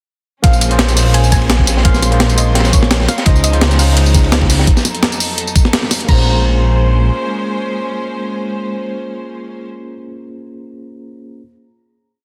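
A dreamy, rolling liquid drum and bass piece at 170 BPM in Bb minor opens at 0.4 s straight into the drop, with a knocking electronic kick, a gritty, up-front sampler-style break with tambourine and crash, a darker, crunchy looped break with edits, and a deep, rumbling detuned saw bass with long gliding notes. Above them a barky, overdriven tine electric piano with medium tremolo plays held rootless chords with syncopated pushes, a clear symphonic string section sustains a bowed pad, and a soft, round pluck steeped in lush chorus and dub echo sits in the background with call phrases, over chords moving from Bbm9 to Dbmaj9 and F7b9. The kick and sampler break stop at 6.2 s as the music settles on a final Bbm9 chord, and the electric piano rings on until 11.4 s.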